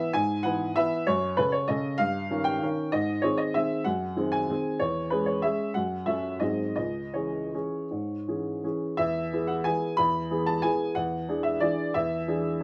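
A clear, woody upright piano sits up front in a moderate studio reverb, playing a solo classical waltz in 3/4 across a range from C#2 to B5. The mood is nostalgic and wistful, with a rubato feel and a tempo that moves between 150 and 205 BPM, first in C# minor over a harmony that passes through F#m, G#7 and C#m. At 9.0 s the piece turns to E major, moving from E to E7 before this portion of a longer work closes at 12.6 s.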